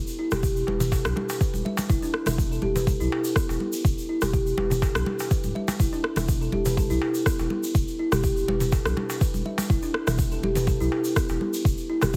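Hypnotic and warm, this afro house excerpt at 123 BPM grooves in E minor pentatonic with a light 16th-note swing as a woody, hollow kalimba plays ringing up-front arpeggios with dub echo and sidechain pumping over a round sine sub bass that also pumps, while a deep up-front electronic kick, a produced rim click, close, dry congas, a crisp metal-shell darbuka and a grainy, distant tube shaker fill out the percussion, all framed in light reverb and a heavily compressed, radio-like sound.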